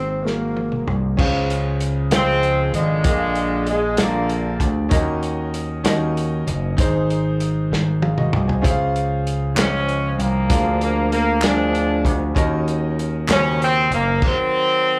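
Soulful and reverent, this slow gospel excerpt in a straight 6/8 sounds like a live club gig heard through the venue's PA, with light reverb around it. A breathy, whispered alto saxophone with subtone and scooped notes opens intimately for just the first second, while a clear concert grand piano with deep bass and long sustain carries the accompaniment through chords moving from Ab9 to Dbmaj7, Bb7 and Ebm7. Underneath, a punchy, amped vintage slap bass sits up front beside a dry, muffled soul drum kit with dark cymbals and a tight kick, which plays fills at 0.2 and 7.7 seconds. A smooth-topped horn section with light vibrato takes the melody from 2.1 to 4.9 seconds and returns at 9.6 seconds, its slapback echo matching that of the piano and saxophone. Crisp group handclaps join in the background from 9.6 to 13.6 seconds before the passage settles on an Ebm6 chord.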